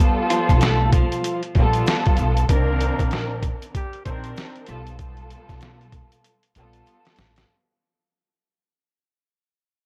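A gritty, pitched-down sampler drum kit with a thumpy kick sits up front in this dark, tough boom-bap hip-hop excerpt at 96 BPM with swung 16ths, alongside a lush bowed string section, a woody, growly pizzicato upright bass, a faint grainy egg shaker, a brief slightly broken-up electric guitar melody with tape echo from 0.3 to 1.4 seconds, and mellow trumpet stabs from 2.5 seconds, all washed in worn, warbling cassette tape as the excerpt fades out under a drum fill at 6.2 seconds.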